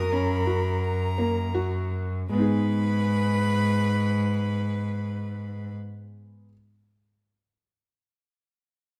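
Set in a restless 7/8 at 156-176 BPM counted in eighths, this short fragment of contemporary chamber music in G# minor slows over its first 2.3 seconds as the harmony moves from F# to G# minor, giving it a hypnotic pull. A reedy, gut-string violin in period style carries the high melody close to the ear while a dark, woody viola with vibrato holds a second line beneath it, and an earthy, biting cello sits up front on the bass. A clear concert grand piano with a deep low end ripples arpeggios through a moderate recital hall reverb, ringing on alone briefly after the strings stop until the 6.5-second mark.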